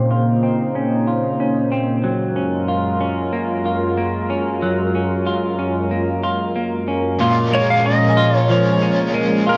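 A clean, fingered semi-hollow electric guitar plays arpeggios in this hazy, ethereal dream pop excerpt at 93 BPM in Bb minor, its lines bathed in lush chorus and tape echo over a warbling, detuned pad of sustained chords, while a filter sweep runs through the opening 7.2 seconds as the harmony moves from Bbmadd9 to Gbmaj7. At 7.2 seconds the chord shifts to Bbm7 and a quieter overdriven guitar adds tremolo-tinged accompaniment, joined by a faint, crystalline FM bell and, from 7.5 seconds, a compressed lap steel melody played with fingerpicks and slide. The guitars, pad and lap steel carry a nostalgic cassette character, and everything sits in a small, wet room like a home recording.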